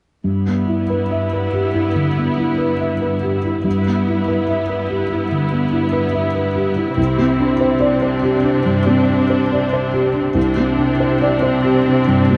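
A felt-muted upright piano sits up front in this tender, moving cinematic excerpt, its thick-felt tone soft, dark and intimate as it carries the accompaniment from C2 up to E5. Behind it, a distant cello section holds the bass between G2 and C3 with a rich, smooth, even sound and vibrato, while a viola section fills the middle register with a clear, focused, bowed ensemble tone. The piece moves in a loose rubato around 71 BPM in 4/4, in G major, tuned slightly low to A4 = 437 Hz. The harmony rests on a G6 chord before shifting to Csus2 at 7.0 seconds. A moderate stone-room reverb lends the whole a softly enclosed space, and the top end is cut above 11 kHz, keeping the sound mellow throughout this cut from a longer piece.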